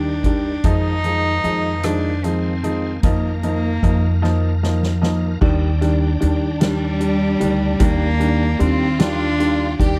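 A gently swaying six-eight pulse from a soft-mallet drum kit with a fat snare and boomy kick, paired with woody pizzicato upright bass, carries this tender, romantic pop ballad excerpt, where a single bowed cello sings the melody with a floating sul tasto tone over an intimate concert grand piano and a lightly overdriven tonewheel organ with chorus vibrato and a fast rotary speaker in the background, a drum fill arriving at 4.2 seconds before a focused, smooth-topped studio violin section enters with a second line at 5.4 seconds, captured in a dry, close 1970s-style studio sound.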